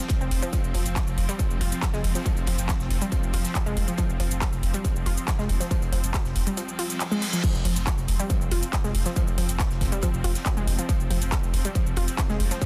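Driving peak-time techno at 139 BPM in a straight 4/4, this relentless, industrial excerpt sits on an F5 harmony and is cut from a longer piece. A distorted, up-front electronic kick anchors the groove. A techno kit with metallic hats, handclaps, shaker and crash pumps against the sidechain, while a very quiet acoustic kit adds a fat snare and hi-hat from a pumping studio room. A thick, deep sub bass holds F1 with tube saturation and a low-pass filter. Above it, a punchy, warbling unison pluck riff spans F3 to F4 through dub echo and tube saturation, and a swarming, tense granular drone ranging from F3 to C4 evolves under its own reverb. The kick drops out at 6.6 seconds, a reverse cymbal sounds from 6.7 to 7.4 seconds with a band accent at 7.0 seconds, and the drop lands at 7.4 seconds, all within a dense, heavily limited modern master and a digital ambience.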